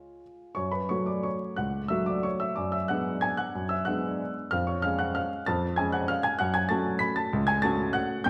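A rubato 3/4 waltz pulse, drifting between 163 and 201 BPM, carries this nostalgic, bittersweet classical fragment in F# minor, cut from a longer piece, where a solo baby grand piano sits intimate and up front with its action noise audible, moving from F#m through G#m7b5/F# and C#/E# back to F#m inside a reverberant recital hall, all framed by a dark, warm production and a layer of vinyl crackle.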